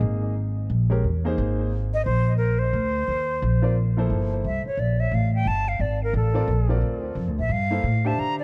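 Modal jazz with an intense, hypnotic swing, cut from a longer piece, where a woody pizzicato upright bass sits up front beside a smooth, vintage-sounding grand piano whose short-sustained chords carry a tape echo. A breathy, close-miked silver flute enters at 1.9 s with a tongued, straight-toned, expressive line, also touched by tape echo, and takes a solo from 4.1 s over a Gm11 chord. The echo-heavy cassette mix has a light reverb.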